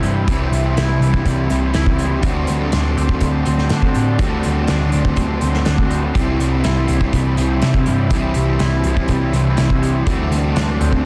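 Shoegaze and dream pop rock at 123 BPM in a straight 4/4, wistful and blissful, cut from a longer piece, with an up-front overdriven electric guitar riff carrying reverse reverb and a raw garage guitar playing its own riff in the background through overdrive and ensemble chorus, a bright, twangy clean guitar picking compressed arpeggios with analog chorus and tape echo, a lush, airy sawtooth unison pad sustaining detuned chords with chorus and phaser, a dark, round, foam-muted picked bass, and a loose indie drum kit of hi-hat, tight kick and medium-tuned snare in a pumping small room, all moving between Cmaj7 and D7sus4 under light reverb and a dense, heavily limited master.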